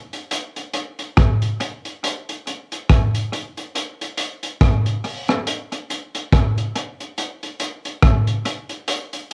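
A swung sixteenth-note reggae groove in 4/4 rides on a crunchy breakbeat drum kit of hi-hat, kick drum and rim click, playing from 0.1 s to 9.3 s. The kit sits up front with a punchy kick, gritty saturation and a dark, rolled-off top, colored by cassette tape and analog delay in a small room with light reverb. Cut from a longer piece, this home cassette recording feels uplifting and warm.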